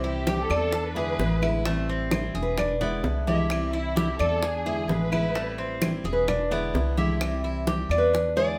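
Sultry and nostalgic, this excerpt from a longer piece moves in straight 4/4 at 130 BPM, rooted in Cuban son and guajira, cycling through C, E7 and Am7. A full-bodied, fingerpicked nylon-string guitar carries the melody in a classical voice, with audible finger squeak, while a dark, lush violin section adds an expressive second line with vibrato and portamento before dropping out at 5.8 seconds. Beneath them, a picked steel-string dreadnought with fresh strings supplies accompaniment, and a mellow Cuban tres plays arpeggios on metallic double strings, some doubled at the octave. Up front, a thumpy upright bass with gut strings gives a woody, pizzicato foundation. Compressed, saturated congas played with soft hands sit in the background, joined by round, low-tuned bongos struck with hard hands, close and dry, and small-room claves entering at 0.5 seconds, all within a moderate studio reverb.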